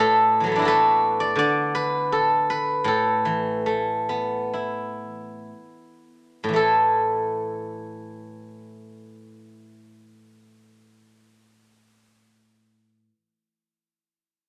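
Chinese traditional music for solo plucked strings, this serene and elegant piece is cut from a longer work and moves in a free, rubato 4/4 at a tempo that drifts between 56 and 90 BPM. A single steel-string zither carries everything from 0.0 to 13.1 seconds, its bright, silvery tone sounding up front and ringing out as it is played with fingerpicks across a range from A2 to A5. The music sits in the A zhi mode, with the tuning set to A4 = 441 Hz. Over the first 6.5 seconds the pace gradually slows, before a second section takes over at 6.5 seconds and runs to 10.8 seconds. A wet studio reverb with a short 0.6-second decay lends the acoustic instrument a polished, airy space.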